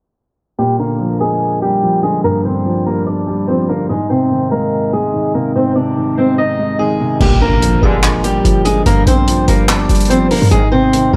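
A fingerpicked, swing-style acoustic guitar with fresh strings carries the melody up front over a mellow, deep-toned grand piano, both shaded by a low-pass filter sweep through the opening of this dark, melancholic half-time trap excerpt built on Gm7 and Ab chords. At 7.2 seconds a punchy, tight 808-style bass arrives with an electronic impact in the background, a compact cocktail drum kit with smooth, rolled-off cymbals, handclaps and hi-hat, and distant, roomy brass ensemble stabs. The mix carries light studio reverb and a warm, filtered finish.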